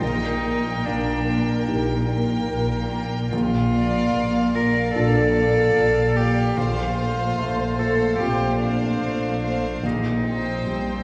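A wet recital-hall reverb with a 1.6-second decay surrounds this moving, bittersweet cinematic string piece in Bb major, heard as an excerpt at a rubato 73 BPM in 4/4, tuned to A4 = 444 Hz. Up front, a single rich cello carries the melody from D4 to Bb4, bowed sul tasto with a soft attack and a pure, floating tone. Above it, a warm violin section also carries the melody high between F5 and G5 with light vibrato, while a darker, woody violin section plays a distant second line, and a very quiet viola section adds close, intimate accompaniment. In the background, a felt-muted upright piano sounds mellow and hushed, its thick felt and audible action noise lending a private, homely touch. A lush cello section and a dark chamber double bass section hold a low Bb beneath chords that move from Eb/Bb to Bb, F/Bb and Cm/Bb over the pedal across all 11.0 seconds.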